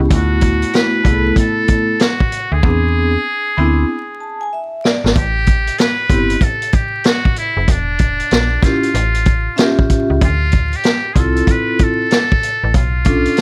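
Vibraphone, played with medium hard mallets, opens this mellow, smoky jazz-hop cut with dark, ringing chords and slow motor vibrato over a snappy, metallic-edged FM slap bass, moving through chords like D6, Am7 and Dm7 at 95 BPM with a swung 16th feel. A muted trumpet carries the melody up front, thin, buzzy and breathy with a whispered, intimate quality, while an acoustic vintage drum kit with a punchy kick, medium-tuned snare and rolled-off top sits forward in the mix. The drums play a fill from 2.6 to 5.2 seconds, the vibraphone adds its own fill from 3.9 seconds, and studio reverb and vinyl crackle lend the whole passage a worn, late-night air.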